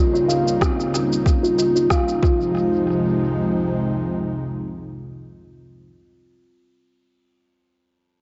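This short organic downtempo fragment moves at 93 BPM in F minor with a gentle 16th-note swing and a hypnotic, warm mood, its chords passing from Eb7 to Fm7. A woody, hollow-toned kalimba rings out in arpeggios through a low-pass filter sweep and analog delay, while a soft electronic kick enters up front at 0.6 seconds and a produced shaker and rim click carry tape echo, both sitting in a small room. Beneath them a detuned sawtooth and square-wave pad with a sub octave and slow attack holds sustained chords, gritty with vintage 12-bit texture, chorus, phaser and sidechain pumping, and it carries on alone after the kalimba stops at 2.8 seconds until 5.9 seconds, all inside an echo-heavy mix with spring reverb and a top end rolled off above 7.7 kHz.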